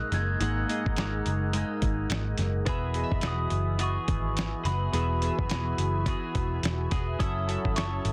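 Indie bedroom pop with a dreamy, nostalgic, swung feel, where a mellow rubber-mallet glockenspiel carries the melody through tape echo over a clean hollow-body electric guitar with lush chorus and vibrato, glossy chorused retro synth keys coloured by cassette tape, a swirling phased analog pad in the background, and a dark, foam-muted picked electric bass and muffled, pitched-down lo-fi sampler-style drum kit up front, moving from G#sus2 to Eadd9 to F#m7.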